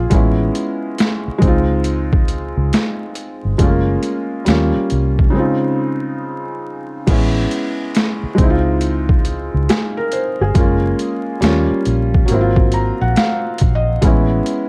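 A gritty, overdriven boom bap drum kit sits up front in this cosy, dreamy lo-fi hip hop piece, its pitched-down, compressed sampler sound carrying a thumpy kick, a high-tuned snare, hi-hat and crash cymbal, with the feel of a large room around it. The tempo is a relaxed 69 BPM in 4/4 with a 64% swing on the sixteenths, in D-flat major. A felt-muted upright piano, also up front, plays soft, mellow, intimate accompaniment with a thin-felt tone and audible action noise, moving through lush chords such as Amaj7, Dbmaj7, Gbmaj7 and Eb9. Beneath it, a vintage foam-muted fingered electric bass gives a dark, round, amped low end. The mix carries light reverb and a bed of vinyl crackle. A break arrives at 5.3 seconds before the second section, and the piano adds a fill from 12.3 to 14.0 seconds over an Ab13 chord as this cut from a longer piece comes to a close.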